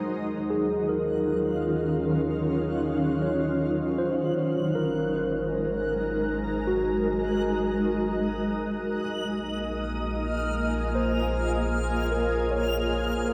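In a slow, straight triple metre, this serene ambient excerpt drifts through Ebm7, Ab7 and Bbm7 in a vast, echoing space. A shimmering, ethereal pad sits up front from the start, holding detuned chords with an octave-up glimmer, chorus and a filter sweep running through its whole length. Beneath it, a deep, round sub bass fades in, while a barky tine electric piano, lightly overdriven through a combo amp, enters at 0.5 seconds with arpeggios trailing into a diffuse ambient delay. From 1.1 seconds a reversed, dreamy granular texture fades in high above, adding a soft, swelling halo. The long cathedral reverb bathes the whole in spacious calm.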